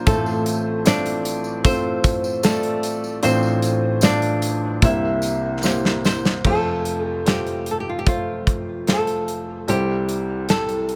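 A warm upright piano opens this melancholic, emotional pop ballad at 75 BPM in a straight 4/4, quickly joined by a flamenco guitar carrying the melody, a modern studio drum kit and a tambourine. The piano sits up front with a woody, boxy tone, long sustain and audible action noise, lending the accompaniment an intimate feel. Fingerpicked in a flamenco style, the acoustic guitar melody has a soft glow and occasional finger squeak. The drums sound acoustic and close, as in a small room, with a tight kick, a medium-tuned snare, hi-hat and crash cymbal, while the jingly, compressed and saturated tambourine stays in the background until 6.4 seconds. The harmony moves from Dm7/A to C7, and a drum fill from 5.6 seconds leads into a new section on F and C, all under light studio reverb in this short cut from a longer piece.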